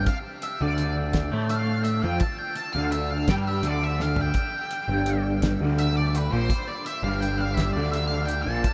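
Psychedelic rock in a hazy, hypnotic 6/8 sway, with a dark, fuzzed-out lead guitar soloing up front through wah and tape echo over a twangy, double-tracked rotary-speaker riff guitar, a growling overdriven picked bass and a cloth-damped, thuddy drum kit with a fat snare that takes a brief fill at 4.0 seconds, all soaked in a huge ambient reverb for a dreamy excerpt cut from a longer piece.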